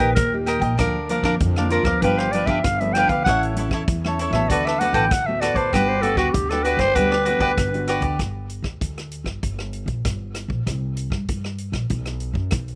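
Recorded outdoors with little reverb, this playful, joyful samba and choro excerpt in G major moves at 97 BPM in a straight 4/4, with a raspy, growling clarinet up front taking a solo with light vibrato and scooped notes, beside a crisp, picked cavaquinho carrying a slapback echo and a full-bodied, fingerpicked nylon-string guitar. Underneath, a woody, thumpy pizzicato upright bass and a swinging big-band drum kit with a punchy kick, hi-hat and rim click keep the groove. The clarinet drops away at 8.0 seconds, and the cavaquinho and guitar follow at 8.2 seconds, leaving bass and drums alone until 12.8 seconds.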